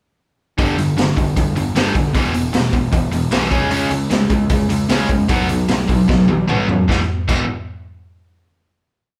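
Recorded live in one room with light reverb, this short, energetic punk rock piece charges along at 152 BPM, as a saturated, punchy garage drum kit up front drives a fast groove under two palm-muted guitars, one biting and overdriven in the background and one bright, scooped and distorted, while a growly fuzz bass pushes eighth notes through a G5, E5, C#5 and B5 progression, a drum fill at 6.1 seconds and a final E5 chord at 6.9 seconds.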